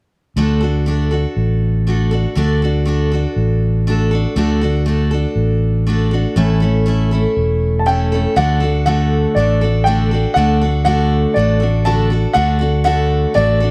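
A straight 4/4 pulse at 120 BPM drives this down-home, nostalgic slice of honky-tonk and classic country in D major, cut from a longer piece, with a picked, full-bodied dreadnought acoustic guitar and a dark, round, amped fingered electric bass sitting up front from 0.4 seconds. The harmony moves from D to A and back to D, and at 7.8 seconds a clear, woody upright piano enters high with the melody. Close, detailed microphones and light reverb keep the sound intimate.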